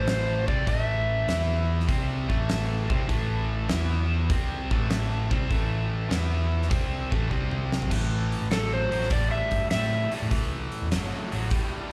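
A dark, overdriven slide guitar carries the melody over a bright, double-tracked stack guitar riff and a growly, punchy picked bass, with a huge arena drum kit joining almost at once: fat snare, punchy kick and bright cymbals. This brooding, smoky blues rock and southern rock power trio swings at 100 BPM in A minor, and the light club reverb makes it sound like a live gig heard through the venue's PA. A drum fill at 7.3 s leads into a slide guitar solo at 7.9 s, before the slide part drops out at 10.1 s in this fragment of a longer piece.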